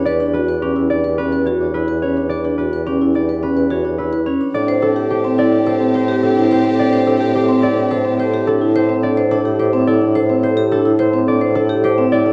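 A straight 4/4 pulse drives this urgent, hypnotic excerpt of minimalist classical pattern music, where up-front vibraphone arpeggios shimmer with slow motor vibrato beside a thumb-plucked, ringing concert harp melody over a mellow solo bassoon bass with vibrato, while an intimate violin section adds soft sul tasto chords from 4.5 s and a dark, smooth-topped French horn plays a second line in the background from 4.6 s until both stop at 8.9 s, the whole set in a wet recital hall reverb and the warbling pitch drift of worn cassette tape.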